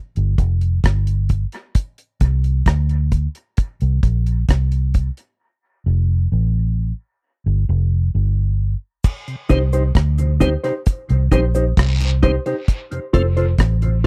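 A dark, round, foam-muted electric bass sits up front from the start of this heavy, deep dub reggae cut in C dorian at 66 BPM, joined by an acoustic reggae drum kit with a tight kick, hi-hat, rim click and crash, the pair carrying a stripped-down break over Bbadd9 and F. From 9.0 seconds the music moves to C minor, bringing in saturated cabasa and guiro fed through dub echo, a piping, lightly overdriven tonewheel organ on slow rotary speaker, and a clean, mellow electric guitar with its own dub echo. The close, dry 1970s-style studio sound keeps the bass punchy and present.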